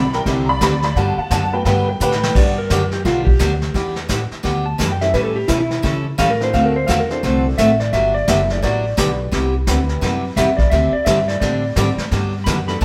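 A jangly, detuned honky-tonk upright piano opens this playful western swing excerpt with a short solo at 172 BPM in G major, over a full-bodied picked dreadnought acoustic guitar with audible finger squeak, a woody, thumpy pizzicato upright bass and an up-front vintage brush kit with a punchy kick and dark cymbals, which plays a fill into 2.4 seconds. There a clean, dark-toned electric lap steel takes over the lead with a slide solo that runs to the end, while the piano drops out shortly after and returns at 5.0 seconds. The swinging band plays live in one stone room with a moderate reverb, through jazzy changes such as Gmaj7, Em11, A7 and D9.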